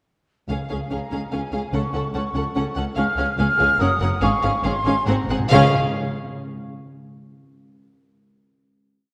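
The whole orchestra sounds together at 0.5 s in this brief, dramatic yet spirited and graceful classical piece in Db major, a fast romantic movement in 3/4 at 143 BPM with a rubato feel. Violins carry a narrow melody with vibrato above a second violin line, while an airy, distant flute sits higher as a second line, violas supply expressive repeated-note chords with portamento, rich cellos hold the bass in sustained bowed notes, and double basses double the bass line. Round, soft-mallet timpani strike single strokes on bass notes and return with a fill at 5.1 s before a final chord, all bathed in a wet concert hall reverb.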